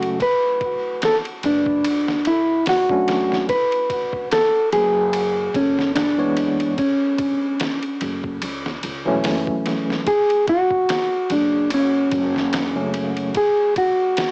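A slow 73 BPM groove in 4/4 with a lazy 16th-note swing sets up this melancholic, cinematic trip hop excerpt in F# minor. The sampler-style drum kit sounds compressed, pitched down and muffled, with a thumpy kick, a medium-tuned snare, hi-hat and ride cymbal set in small room ambience and cassette tape color. Underneath, a pizzicato upright bass with gut strings gives a woody low end, while a bell-like tine electric piano carries the accompaniment through tremolo and tape saturation, both parts stopping at 13.3 seconds. Up front, a dark, clean, fingered electric guitar sings the melody in the middle register, trailed by dub echo and cassette wear, and rings on with the drums to 14.3 seconds. The harmony drifts from Bm7 through F#9sus4, A6 and F#m before landing on a rootless D(#11), and light reverb with a small-speaker, home-cassette character gives the whole piece a hazy, intimate feel.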